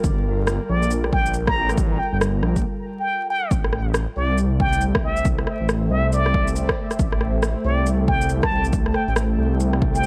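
A close-miked, plunger-muted jazz trumpet carries a bright, wah-wah solo melody through tape echo from 0.7 seconds in this rainy, wistful future garage excerpt, set over a menacing detuned saw bass with saturated filter swells, an ethereal, airy pad with slow-attack chords bathed in chorus and reverb, both pumping to a sidechain, and overdriven electronic drums, a punchy layered kick with shaker and rim click, swinging in 4/4, all under vinyl crackle and light reverb, with a brief break from 2.6 to 3.5 seconds.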